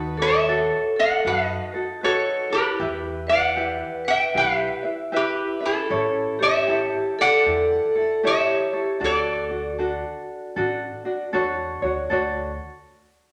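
Dreamy and relaxed, this Hawaiian piece sways at 77 BPM in D major with a swung 4/4 feel, moving through B7/D#, Em, A7 and Dmaj7. An up-front lap resonator guitar, played with slide and fingerpicks, carries the melody in a nasal, metallic voice, while a ringing vibraphone with medium hard mallets and medium motor vibrato adds a second line. A light, fingerpicked tenor ukulele provides accompaniment over a woody pizzicato upright bass on steel strings, all set in a large studio reverb. The guitar and vibraphone stop at 11.3 seconds, leaving the ukulele to close at 12.5 seconds and the bass at 12.6 seconds in this excerpt from a longer piece.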